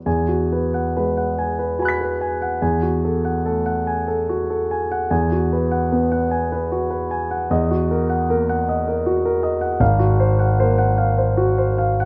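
Impressionist classical solo piano in 3/4 with a free, rubato feel, luminous and dreamy in mood. A warm concert grand, up front with a deep bass, spans from the low register to the high treble across this 12.1-second excerpt cut from a longer piece. Its harmonies drift from Eadd9 through F#m9/E and F#6/E to a closing Ab13, captured by close, detailed microphones in a moderate recital hall reverb.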